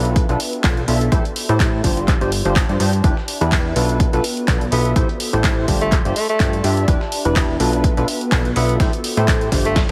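A swung groove from a punchy electronic kick and an analog drum machine's claps, hats and snare, shadowed by a very quiet, gritty sampler-style kit, drives this bittersweet, energetic piano house fragment, with a drum fill closing it at 9.8 seconds. A funky, plucky analog bass and a hollow, chorused organ stab riff with tape-worn delay ride over a lo-fi, warbling pad sitting dark in the background, all three pumping against the kick as they cycle through minor seventh, half-diminished and suspended chords. At 4.7 seconds a breathy tenor saxophone enters with a smooth, jazzy vibrato line trailed by delay, and the whole mix carries a heavily compressed, radio-like sheen in a light reverb.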